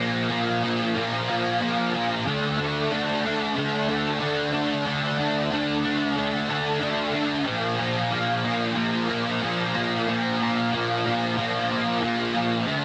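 The recording has a dense, heavily limited modern master, with light reverb and a digital ambience around a single up-front part. This is a hazy, wistful rock fragment in a straight 4/4, cut from a longer piece and lasting about 13 seconds. A bright, fuzzed-out electric guitar, picked, double-tracked and compressed, carries the whole passage alone, ranging from Bb2 to D4. Its distortion is thickened by an ensemble chorus, giving the tone a shimmering, doubled edge. The guitar moves from a Bb5 power chord to D5 at 2.3 seconds, then returns to Bb5 at 7.5 seconds.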